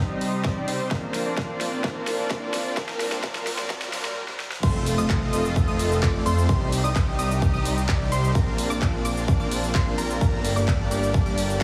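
A straight 4/4 pulse from a punchy, overdriven electronic kick and a layered big-room kit with a huge snare, handclaps, hi-hat, shaker and crash drives this emotional, euphoric festival progressive house excerpt, which opens on a drum-filled build-up where a filter sweep moves across lush, bright supersaw chords over dark, reedy bowed strings in the background and a very quiet riser, before a brief stop at 4.2 seconds. At 4.6 seconds the drop lands with an impact as a thick, menacing detuned saw bass and a wave-folded unison pluck arpeggio enter, with the bass, pluck, chords and strings pumping against the kick and tape echo trailing the chords and pluck. The mix carries a heavily compressed, radio-like sound with small room ambience and light reverb.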